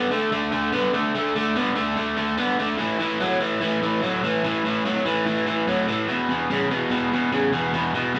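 Rock excerpt at 146 BPM in A major, gritty and driving, with a solo overdriven electric guitar, dark, picked, double-tracked and up front in the low register, moving through D5, A5 and E5 power chords over 8.2 seconds in a large studio with moderate reverb, captured live in one room.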